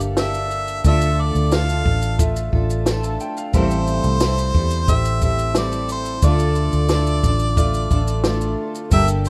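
A tender, wistful acoustic pop excerpt in D minor at 89 BPM opens with a round, foam-muted electric bass up front, a dry cocktail kit with punchy kick, high-tuned snare and shaker, a double-tracked fingerpicked steel-string guitar with fresh strings, and a brilliant, woody upright piano in the background, before a present harmonica with light vibrato enters at 0.2 seconds to carry the melody over Gmadd9, Dm and Am7 chords in a rough home demo mix.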